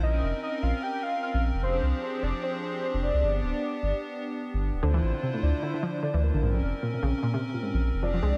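IDM in an eerie, melancholic mood, this short cut from a longer piece moves with a gentle 16th-note swing over a chord cycle that drifts from Bbmadd9 through Fm6, G and Dm7 before returning to Bbmadd9. A warbling, nostalgic lead carries the melody from the start, its detuned tone colored by analog chorus, cassette tape character, tape echo and vibrato. Beneath it a hollow, flute-like pad holds soft sustained chords with its own chorus shimmer, while a deep, round analog bass sits up front with a touch of tube saturation. At 4.8 seconds a dusty, lo-fi pluck joins with short, filtered arpeggios, its noisy, detuned edge smeared by chorus and analog delay. The whole mix is echo-heavy with light reverb, giving the piece a faded, tape-worn haze.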